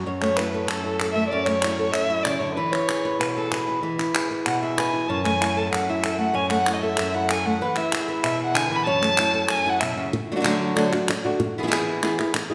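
Set in the lingering reverb of a church or concert hall, this fiery, dramatic flamenco fragment puts a fingerpicked acoustic guitar up front, finger squeaks and all, while a single bowed violin sings a smooth, expressive second line full of vibrato and portamento until 10.0 s, and crisp, close, dry palmas hand claps drive the straight feel through a closing shift of chords.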